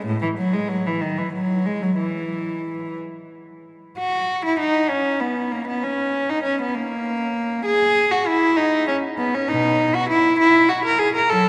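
Classical, baroque-style suite movement for unaccompanied cello in 6/8, radiant and flowing at a rubato 59-67 BPM in dotted quarters, shifting from E major to B major at 4.0 s, as a single close, up-front bowed cello in period style spans A2 to A#4 with a reedy gut-string tone, airy bow and light vibrato, ringing in the long, wet reverb of a cathedral-like church or concert hall in this short cut from a longer piece.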